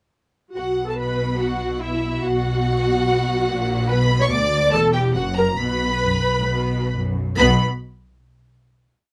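Dramatic and stormy, this short, complete piece is a quick classical-period movement for string orchestra in common time, played with a pliant rubato. The violas, cellos and double basses enter at 0.5 s, and the two violin sections join a moment later. The first violins carry the melody with a clear, focused tone, while the second violins double the tune an octave lower with a rich, even sound, and the lush, expressive violas also double it at the octave. Below, the cellos hold a sustained bass with passing notes and answer at phrase ends, while the intense, up-front double basses double that bass line. The harmony stays centred on the home minor chord with brief turns to its neighbours before the ensemble settles on a final note from 7.4 s. Close, detailed microphones and very little reverb keep the bowing vivid and immediate.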